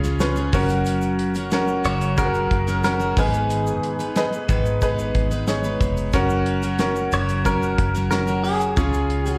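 A clear, woody upright piano leads this uplifting, hopeful stretch of piano-driven pop, sitting up front with audible action noise, long sustain, plate reverb and a slapback echo as it carries the accompaniment. Beside it, a jumbo steel-string acoustic guitar with fresh strings plays a bright, full-bodied picked riff, its finger squeaks caught along with its own slapback echo. A foam-muted vintage electric bass gives a dark, round low end, while a damped 70s drum kit with a tight kick and medium-tuned snare keeps a straight, dry groove with a rolled-off top. A grainy egg shaker ticks in the background. At 1.9 s a clean, twangy electric guitar enters with a compressed, scooped melody, dressed in plate reverb and slapback echo, as the chords move from C# through F# and G#m and back. The whole cut comes from a longer live gig heard through the venue's PA, with a club reverb around the band.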